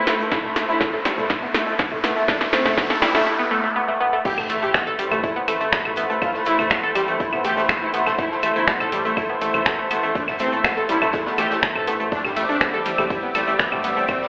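A punchy, tape-warm analog drum machine drives this hypnotic, cinematic melodic techno cut in A minor at 122 BPM, joined by a deep layered electronic kick. A nasal, detuned analog pluck plays phased arpeggios up front, while mellow, brassy synth brass and a floating violin section carry the melody and second line behind it. A lush, bright unison pad sustains the chords, and a menacing detuned saw bass evolves in the background. A riser and noise sweep build the opening section into a drop at 4.3 seconds, where a very quiet big rock drum kit enters. A faint, grainy tube shaker sits beneath it all. Sidechain pumping and delay give the synths their pulse, the whole mix rings with roomy, telephone-tinged reverb, and the harmony moves from Am to Cadd9 at 12.1 seconds.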